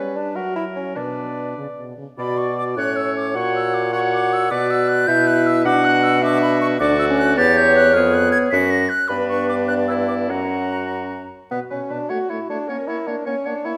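Set in a wet recital hall with a lingering reverb, this excerpt from a quick classical-period movement for wind quintet sounds dramatic and urgent, moving in a straight 6/8. A silver concert flute carries the melody high above the ensemble, its metallic, pure tone shaded with vibrato and expressive, tongued phrasing. Beneath it, a clear oboe sings a second line that sounds distant and roomy, while a smooth-topped clarinet and a mellow French horn with light vibrato fill in the accompaniment. The bassoon anchors the bass, warm and close-miked, sitting up front in the blend. The five players sound together from the opening moment to the cut at 13.8 seconds, and the harmony passes through dark turns such as an Fdim and an F#5 before settling back on Bm at 11.5 seconds.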